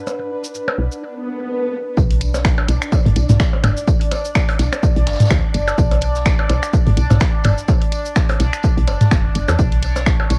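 A punchy analog kick drum sits up front in this quirky, hypnotic minimal techno excerpt in B minor at 126 BPM, arriving with the drop at 2.0 seconds after a short electronic swell. Beneath it, a soft, round FM bass with a woody, dark tone, a fast attack and decaying notes pumps with sidechain from 0.8 seconds onward. A bright, resonant sawtooth texture bubbles through random filter steps with chorus and reverb, while a warbling, detuned lo-fi pad glows faintly in the background during the first second only. Layered garage drums with cabasa, finger snaps and hi-hat join electronic percussion blips and toms re-recorded in a small room, riding a 16th-note swing. A natural acoustic big-band kit with hi-hat, snare and tambourine adds big-room air far behind the drop, and the piece carries a home cassette character with light reverb.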